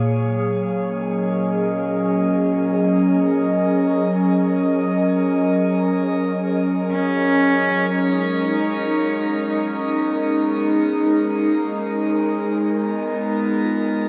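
Serene and melancholic, this free-time ambient fragment in G# dorian, cut from a longer piece, rests on a warbly, nostalgic tape-like pad with chorus holding F#69 and then G#m chords under a dark production and a long shimmer reverb, while a nasal, gut-string cello carries a delayed melody from 6.9 s and a delicate, bell-like celesta arpeggio is barely audible from 13.6 s.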